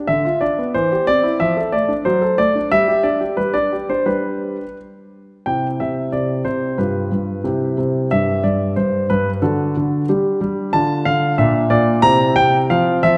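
A classical-period piano sonatina in C major, this short passage moves at 91 BPM in 2/4 with a rubato feel that lends it an elegant, playful character. A solo concert grand piano carries the whole piece, spanning G2 to Bb5 with an intimate, polished tone, deep bass and audible action noise that places the listener close to the keys. The instrument sits present and up front, yet a wet concert hall reverb with a 1.8-second decay surrounds it with a generous sense of space. The opening section runs through a graceful progression from Dm69 to C/E and on toward D7/F# and G, before a second section begins at 5.5 seconds with a settled return to C. From there the harmony wanders more boldly, passing through D and G5 before a colourful turn to Bb and an unresolved C7 near the close of this fragment of a longer piece.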